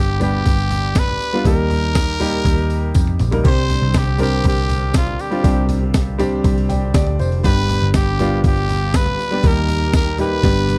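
Piano-driven pop with a dramatic, earnest mood, where a raspy, growling trumpet carries the melody with slapback echo and light vibrato over a clear concert grand piano, a dark, foam-muted picked electric bass, a gritty, compressed breakbeat sampler-style kit with thumpy kick and high-tuned snare, and a very quiet jingly tambourine, while a percussive tonewheel organ with fast rotary speaker enters at 3.4 seconds with sustained chords, all in a dry, close 1970s-style studio sound.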